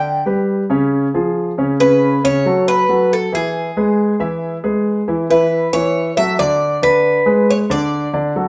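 A straight four-beat pulse drives this short, danceable Latin clip, cut from a longer piece, and its mood is sunny throughout. The Cuban tres carries the melody, its picked double strings giving a warm, metallic ring with some strings doubled at the octave, while the concert grand piano supports it with arpeggios that reach down into a deep, warm bass. Both instruments sit up front, yet the whole recording has a wet studio reverb that places the listener further back in the room. The opening passage moves through G, C#, F#m, Esus24 and E before a brief chordless moment at 5.3 seconds leads into a second passage built on D69, Bm6/D and D. The tres drops out at 8.1 seconds, leaving the piano to finish at 8.5 seconds.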